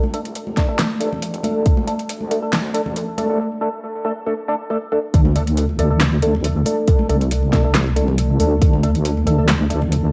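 Dark and brooding, this deep dubstep excerpt in D minor moves at 138 BPM with a swung half-time feel, pairing a deep, wobbling sawtooth bass up front with hollow, nasal organ stabs that carry a filter sweep, chorus and dub echo through a build-up. Bright, high-tuned congas sit distant in the background, while a deep house kit supplies a fat snare, metallic hats and handclaps, all soaked in cassette-tape character and light digital ambience. After a break from 3.4 seconds, the drop lands at 5.1 seconds as an up-front electronic kick returns, having first appeared at 0.6 seconds.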